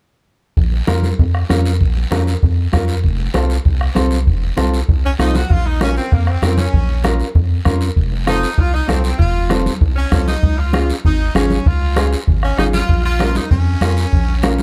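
Fiery and passionate, this cumbia excerpt in Bb minor runs at a brisk 195 BPM, built on a rubbery, wave-folded square bass up front, a soft-beater bombo, a raspy guiro and ringing congas in the background, with a woody, thumb-plucked nylon-string guitar joining at 0.9 seconds and a clear jazz-style saxophone section with light vibrato taking the melody from 5.0 seconds over close, dry, detailed sound.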